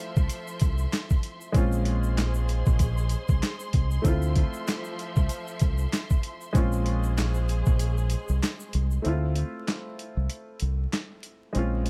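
A gritty, compressed sampler-style drum kit with a thumpy kick, medium-tuned snare, handclaps and hi-hat drives this tough boom-bap hip-hop cut in D minor at 96 BPM with a light sixteenth-note swing, entering at 0.2 s together with a dark, round, punchy fingered electric bass and a grainy egg shaker in the background, while a worn, woody, slightly detuned upright piano with cassette-tape colour and tape echo comps between Dm9 and Bbm9 chords and a lush bowed string section with vibrato sustains chords until both strings and shaker drop away at 9.0 s, all set in an echo-heavy mix dusted with vinyl crackle.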